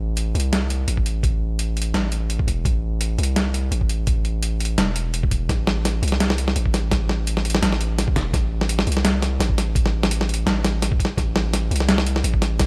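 A deep, mellow 808-style bass with a sine tone sits up front from the start, its long notes striking fast and then decaying low in the register. This is dark, heavy half-time drum and bass in A minor at 169 BPM, with a light swing on the sixteenths and a touch of light reverb. A gritty, pitched-down, compressed sampler-style kit with hi-hat and a medium-tuned snare enters at 0.2 seconds, and a thumpy, tape-warm electronic kick joins at 1.0 seconds, both drum parts carrying small room ambience.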